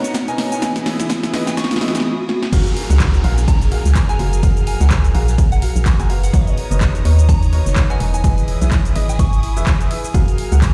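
Piano house with a feel-good, uplifting mood, cut from a longer piece: a clear, woody upright piano riff with dub echo pumps against a lush symphonic string section, an airy breathy pad and a soft synth bell melody. A drum fill and riser carry the build-up into the drop at 2.5 s, where the hollow, organ-like FM bass enters alongside the overdriven electronic kick drum, a punchy analog drum machine with handclaps, cabasa and cymbals, and a very quiet big rock drum kit. A riser and downlifter sweep in the background until 6.3 s, and the mix sounds like it is playing on a big sound system in a bare room.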